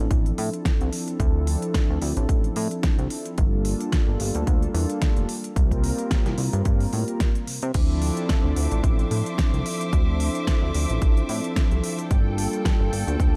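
Nu-disco at 110 BPM in D minor, this cosmic, sleek fragment rides a lightly swung 16th-note groove built on a punchy, up-front electronic kick and a layered pop kit with a fat snare, crisp hi-hats and crash cymbal, under a glossy chorused synth bass that mixes pulse-width and sawtooth tones with a plucky filter and ring modulation. A smooth, detuned analog pad carries the Dm9, Gm9 and C7sus4 harmony through chorus, cassette-tape colour, tape echo and sidechain pumping, with a filter sweep running across its whole length. At 7.7 seconds a rich bowed string section enters with high sustained chords and vibrato, also pumping with the sidechain, all set in a digital ambience.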